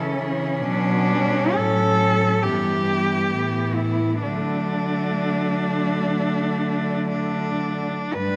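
In a rubato 4/4 at a slow 54-70 BPM, this lyrical classical excerpt in D major sets four bowed cellos in a reverberant scoring-stage space: an up-front, focused cello carries the melody with vibrato, a smooth, distant cello sings the second line, a close cello with a warm tone plays the accompaniment until 7.9 s, and a rich cello anchors the bass, with the harmony moving from A through Bm and Em/G to a D resolution at 4.2 s.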